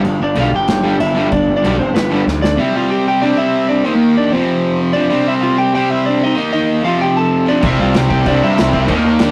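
Rowdy and upbeat, this punk rock excerpt charges along at 190 BPM in 4/4, opening in half time over a loose indie drum kit with a punchy kick, medium-tuned snare and dark cymbals, then breaking into a drum fill at 2.3 seconds before the kit and the growly, overdriven fuzz bass drop out and return together at 7.6 seconds. A slightly broken-up, compressed lead guitar carries the melody throughout, while two bright, distorted picked guitars play the riff, one up front and one tucked behind, and a double-tracked high-gain guitar joins the final stretch. The rough rehearsal-room sound has a small room's moderate reverb and saturated glow as the harmony moves from G to C, Eb5 and F.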